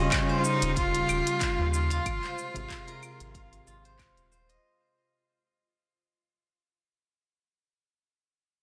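A dense, heavily limited master sits in a moderate scoring-stage reverb, and this short excerpt from a longer piece fades out over its whole length. It is organic downtempo at 93 BPM in 4/4, with a light 16th-note swing and an earthy, meditative mood, moving from Eb9 to Ab6 at 2.1 seconds. Up front, a single bowed cello carries the melody with a rich, biting, slightly nasal tone, light vibrato and an airy bow. Behind it, a felt-muted upright piano with audible action noise and 12-bit sampler grit plays soft, dark accompaniment, while a breathy, detuned pad with chorus holds sustained chords, and both pump with sidechain compression. A steel-string zither played with fingerpicks spins silvery arpeggios through a delay and rings on alone until 6.3 seconds. Underneath, a round sine sub bass pumps as well, and a tape-warm electronic kick and a produced afro-pop kit with claves, handclaps, smooth hi-hat and shaker keep the groove.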